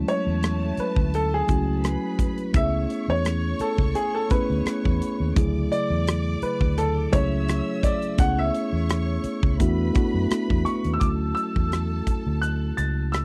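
A clear, slightly worn grand piano carries the melody as a solo through the first 11.0 seconds of this lush 1970s-style soul excerpt at 85 BPM with a gentle swing, over mellow tine electric piano chords moving through Dmaj9#11, Amaj9/C# and E7sus4 before settling on Dmaj9, a dark, round, foam-muted electric bass, a drum kit of hi-hat, punchy kick and rim click, and a bowed string section with vibrato sitting low in the mix, captured in a dry, close studio sound.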